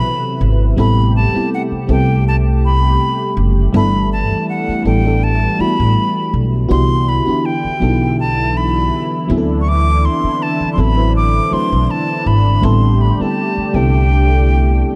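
At 81 BPM in 4/4 with a light 16th-note swing, this dreamy, romantic contemporary R&B fragment drifts at an unhurried pace. An upright bass sits up front, entering at 0.4 s with thumpy, woody pizzicato notes in its low register. Around it, a mellow FM electric piano plays soft, round chords with a fast attack and natural decay, colored by chorus and phaser. A detuned sawtooth analog pad adds smooth sustained chords with a soft attack and long release, also treated with chorus. Over the top, a breathy, bright concert flute carries the melody with a tongued, straight and slightly unsteady tone through a digital delay. The harmony moves from a rootless D13 through Am9, G69 and Cmaj9#11 before returning to D13 and Am9, all set in a small, lightly reverberant room with a dark, warm production.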